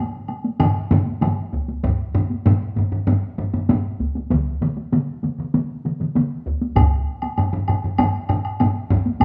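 A heavy-stick taiko drum and a woody woodblock open this driving, powerful excerpt of Japanese traditional taiko ensemble music at 98 BPM in a straight 4/4. More taiko drums struck with hard and heavy sticks join close and up front, while the woodblock drops out at 1.4 s and returns at 6.8 s, the band playing live together in one room with a moderate large-studio reverb.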